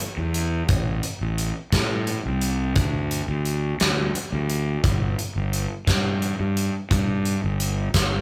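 Restless and anthemic, this short cut from a longer quiet-loud alternative rock piece rolls in a straight 6/8, with a big acoustic rock kit of hi-hat, tight kick and a medium-tuned snare sounding up front and mid-forward in a large room. A fingered electric bass enters at 0.2 seconds, fuzzy, growly and punchy, its overdriven tone bright and direct as it moves between G1 and A2. The pair sounds like a band playing live together in one room, touched by light reverb.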